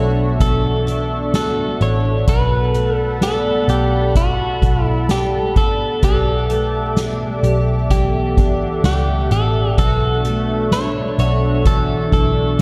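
A slightly broken-up, compressed electric guitar carries the melody up front through spring reverb and delay in this ethereal, haunting dream pop excerpt at 64 BPM, tuned to A4 = 436 Hz, over a shimmering, octave-doubled twelve-string acoustic guitar picking arpeggios through analog chorus and delay, a warbling, detuned sawtooth analog pad holding sustained chords, a round, foam-muted vintage electric bass, and a soft-mallet drum kit with a boomy kick that joins at 0.4 s, as the harmony moves from Bm11 through A13sus4 and A7sus4/B back to Bm11 in a dark, lightly reverberant mix.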